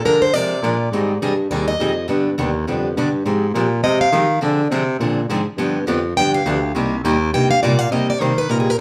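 A roomy live-in-one-room sound, with moderate large studio reverb, frames this fiery, virtuosic cut from a longer piece of acoustic string swing in the jazz manouche style, taken at 206 BPM in 4/4 with a swung eighth-note feel in C minor. A picked, plugged-in steel-string acoustic guitar carries the melody up front throughout, its bright, fresh-stringed parlour tone catching audible finger squeak as it solos from 0.0 to 8.8 seconds. Also up front, a breathy baritone saxophone takes the bass role, sounding mellow and whispered, with subtone, soft attacks, scooped notes and vibrato that give it an intimate jazz character. A second picked steel-string acoustic guitar supplies the accompaniment with a boxy, parlour-style voice. The harmony moves through Bb7, Abmaj7, G, Fmadd9, Dm7b5 and G7 before landing on Cm7.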